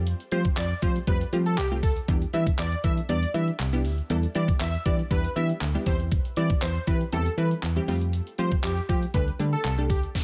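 A straight 4/4 pulse at 119 BPM drives this confident, bittersweet dance-pop drop in E phrygian, built on a thumpy, tape-tinged 8-bit drum machine with kick, hi-hat and handclaps, plus a very quiet, human-sounding group handclap from a live room. A snappy FM slap bass with a metallic attack and crisp wavetable chord stabs both pump against the sidechain, moving through Fadd9, Em7, C/E and Dsus4. Above them a thick, bold, wave-folded unison sawtooth lead with vibrato and tape echo carries the melody, and an up-front downlifter lands at 10.2 seconds in this dry mix cut from a longer piece.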